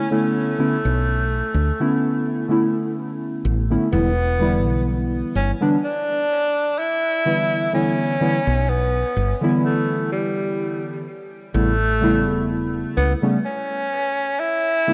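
A rough home-demo mix with cassette-tape character sits inside a lush hall reverb, giving this slow, swung vaporwave fragment, cut from a longer piece, a woozy, hazy glow. Warbly lo-fi synth keys carry the accompaniment throughout, their square and sawtooth tones mellow and nostalgic under a subtle chorus, with a filter sweep and fast, decaying notes. A breathy tenor saxophone takes the solo melody up front, whispered and intimate in a pop style, with soft attacks, scooped notes, vibrato and a smooth top, roughened by 12-bit sampler grit and trailed by tape echo. A woody fretless electric bass enters at 0.8 seconds with a dark, round, hollow-body tone that sounds direct and close, then drops out at 13.1 seconds. The harmony drifts from Bm11 to Em7 and settles on A9 at 11.1 seconds.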